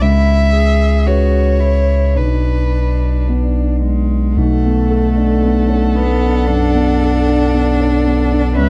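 Longing and melancholic, this short neoclassical excerpt for piano and strings drifts in a rubato 4/4 at around 54-58 BPM in B dorian, moving from C#m7 to Bm and settling on Bm7. A focused solo violin with vibrato carries the melody over a smooth, close cello second line, a dark, boxy concert grand with long sustain, and a punchy sine sub bass whose pitch-drop attack sits up front. At 4.4 seconds an expressive viola enters with portamento, all in a dry sound with little reverb.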